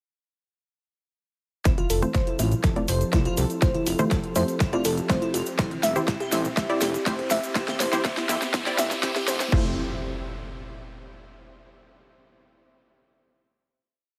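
Uplifting and euphoric, this short progressive house piece at 122 BPM in F major surges through a build from 1.7 seconds, opening on Fmaj7, before settling on a final chord at 9.5 seconds. A punchy, overdriven electronic kick sits up front in a four-on-the-floor pattern, joined by a big-room kit with a huge snare, programmed hats and crash, while a grainy cabasa plays hand-played sixteenths and very quiet congas add a tribal loop in a small room. A fat, detuned analog bass drives in eighth notes, and a glassy, crystalline wavetable pluck spins a 12-step arpeggio that drifts against the bar, its filter sweeping through the build along with chorus and dub echo. Behind it, a lush unison pluck adds dotted-rhythm chord stabs with dub echo, and an airy, breathy pad holds mellow sustained chords with chorus, all four synth parts pumping under sidechain. A riser enters at 4.0 seconds and carries into an impact, with light reverb and a high-pass filter shaping the overall sound.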